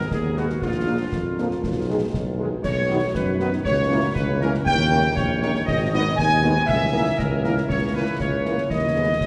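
Bathed in a long cathedral reverb, this resolute, martial wind-band march fragment sets a dark, distant trumpet section on the melody alongside a close-miked woodwind second line with vibrato, while a warm, up-front tuba carries the bass, a very quiet, mellow French horn section and a shadowy, roomy trombone section holding sustained chords enter at 0.4 s, and concert snare drum, bass drum and dusky clash cymbals mark the 2/4 stride.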